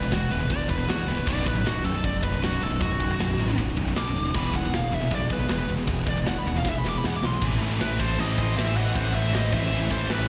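Heard through a venue's PA with a recital-hall reverb, this fragment of an epic, heavy metal piece drives at 156 BPM in 4/4, moving from E to B and back before shifting to A minor at 7.4 seconds. A high-gain lead guitar solos over a growly, overdriven bass placed up front, a double-tracked fuzz guitar, two bright distorted rhythm guitars set back in the mix, and a tight studio drum kit with bright cymbals and a drum fill at 6.7 seconds. A very quiet shimmering pipe organ with strings celeste holds soft, romantic chords from 1.3 seconds, and a second distorted lead guitar line with slapback echo joins in the background at 7.8 seconds.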